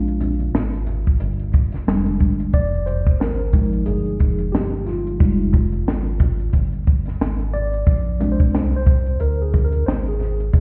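Heard as if muffled through a wall, with vinyl crackle and a stone-room reverb, this smoky, nocturnal jazz-hop fragment sits at 90 BPM in F dorian with a lazy swung feel. A mellow, clean tine electric piano takes the lead from the start, moving from Bb9 and Fm69 into a long Fm9 stretch at 2.5 seconds before returning to Bb9 at 7.9 seconds. Beneath it, a deep, round analog bass with a detuned, sustained tone and a dark cocktail drum kit with a punchy kick and a high-tuned snare sit up front, while bright egg shaker and hard-handed congas tick along in the background.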